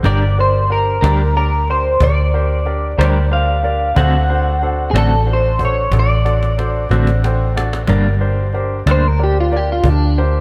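Mournful and brooding, this short slow blues in 12/8 moves from G minor to D7 and back, cut from a longer piece. A vintage, foam-muted fingered electric bass sits up front with a dark, round, punchy tone, under a woody, compressed cajon with faint snares. A dark, clean electric guitar with tremolo and a clear, polished baby grand piano with subtle chorus fill out the accompaniment. The melody comes from an electric guitar through a small old amp, picked, slightly broken-up and up front, colored by analog chorus and delay, and a second guitar through the same kind of amp adds a brief line from 3.0 s. The cajon plays a fill from 5.9 s, the piano adds its own fill just before the change, and at 7.9 s the clean guitar steps out for a solo. A moderate plate reverb soaks the whole mix in a dreamy haze.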